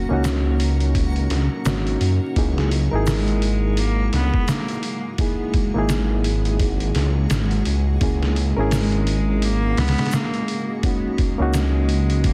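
Trip hop in C# dorian at 85 BPM with a swung 16th feel, cinematic and dark, where a deep, rumbling detuned saw bass with tube saturation and a gritty, pitched-down sampler-style drum kit with a thumpy kick sit up front, while a reedy electric piano with tremolo and tape echo and a vintage string-machine cello bed with phaser and ensemble chorus carry the chords from G#9sus4 through C#m69 and F#7, a reversed, dreamy swelling texture and an egg shaker linger in the background, and from 3.1 seconds a single bowed cello with a nasal, earthy tone, light vibrato and dub echo adds the melody, all under a dense, heavily limited master with vinyl crackle.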